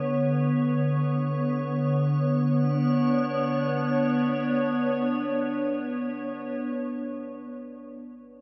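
Tense and cold, this short hip hop excerpt floats in free time in B minor, tuned slightly below standard pitch at A4 = 438 Hz. The only part is a glassy FM pad holding sustained chords from 0.0 to 6.5 seconds, spanning D3 to C#5 and opening on a Bmadd9 chord. It sounds ethereal, warbling and vintage, with a slow attack, a long release, an ensemble chorus and its own built-in reverb, and it sits up front in the mix. The piece moves from one section into a second at 2.4 seconds, which runs to 5.8 seconds. A moderate digital room reverb surrounds the pad, and heavy compression gives the whole recording a squeezed, radio-like sound.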